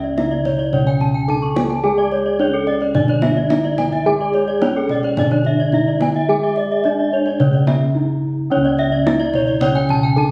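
A steady, straight 4/4 pulse at 108 BPM drives this brilliant, hypnotic excerpt of Balinese gamelan in C# pelog, where a bronze metallophone carries the melody with airy, shimmering beats from its paired tuning, a lower metallophone plays accompaniment, two higher metallophones spin arpeggios (the upper one bright and struck with horn mallets, the other up front and band-limited), bossed gongs supply a round, beating bass, and a tight kendang enters at 0.2 s, all within moderate recital-hall reverb, pausing for a break at 7.7 s as the kendang plays a fill from 7.8 to 8.5 s.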